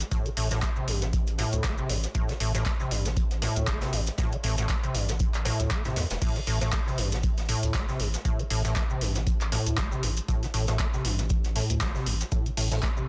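A dense, heavily limited mix in light studio reverb frames this raw, hypnotic acid house excerpt in swung 4/4, where a rubbery, resonant, overdriven acid bass riff with chorus, tape grit, delay and sidechain pumping sits up front over a round, wave-folded analog bass with tube saturation, a deep tape-warm electronic kick, an electro analog drum machine's metallic hats, handclaps and crash, a bright, grainy cabasa up close, and a distant, roomy brushed jazz kit playing hi-hat and snare in the background.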